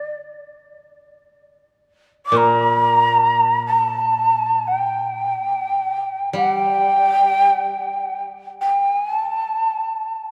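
Japanese traditional chamber music in free time, austere and calm, this fragment of a longer piece features a breathy, end-blown bamboo shakuhachi carrying the melody up front with vibrato, a soft attack and a touch of chiff, while a bright, woody koto plucked with fingerpicks adds a low accompaniment from 2.3 to 9.2 seconds, all heard within a moderate church-like reverb.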